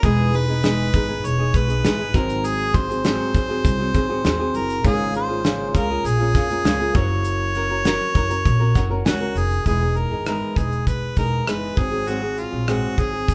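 A smooth, up-front harmonica carries the melody in this easy-going, carefree acoustic pop excerpt at 100 BPM, over fingerpicked nylon-string guitar, woody pizzicato upright bass with a bright steel-string edge, and a cloth-damped, thuddy drum kit whose fat snare, tight kick, rim click and shaker sound gritty and rolled-off. A very quiet felt-muted upright piano adds a mellow, intimate accompaniment with audible action noise, stepping in with a fill from 8.5 to 9.7 seconds before the harmony returns to Emaj7. The band plays live together in one room, wrapped in a moderate large-studio reverb.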